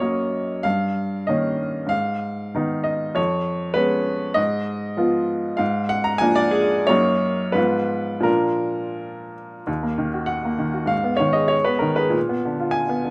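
Moving in a flexible two-beat metre, this brief passage from a longer romantic character piece for solo piano leans on rubato, stretching and pressing the pulse to suit its brooding, stormy mood. An upright piano carries everything across the full 13.1 seconds, ranging from Eb2 up to Bb5, with a brilliant, woody tone placed up front in an intimate setting where the audible action noise adds a close, physical quality. The harmony opens in a restless, wandering way before settling into a darker minor centre from 4.4 s, with diminished and dominant-seventh colours heightening the tension. A new section begins at 9.7 s and closes on an unresolved, biting dominant chord, leaving the phrase suspended. Light reverb gives the polished sound a touch of space, and the instrument is tuned slightly below standard pitch, to A4 = 439 Hz.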